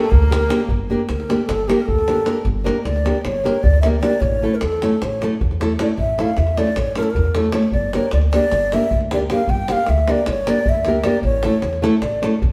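Balkan wedding-band folk in a fiery, virtuosic 9/8 at 308 BPM in G Dorian sharp four, this excerpt from a longer piece opens with a rich, vibrato-laden bowed violin sounding alongside a breathy, up-front ney and fingerpicked, woody nylon-string guitar. The violin drops out at 0.7 s, when the ney takes an expressive solo over the guitar, pizzicato upright bass and a deep davul, all played live together in a stone room with a lingering reverb as the chords move between G minor and A.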